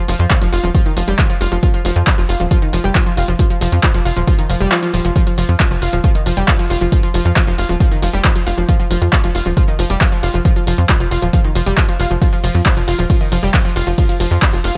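A round, detuned analog pluck opens this emotional, bittersweet uplifting trance excerpt with bright, chorused arpeggios pumping through a digital delay, joined almost at once by a tight, driving sequencer bass of sawtooth and square wave placed up front, a tape-warm analog drum machine of handclaps, hi-hat and ride cymbal re-recorded in a small room, and a punchy electronic kick that briefly drops out between 4.7 and 5.2 seconds, all within a digital ambience.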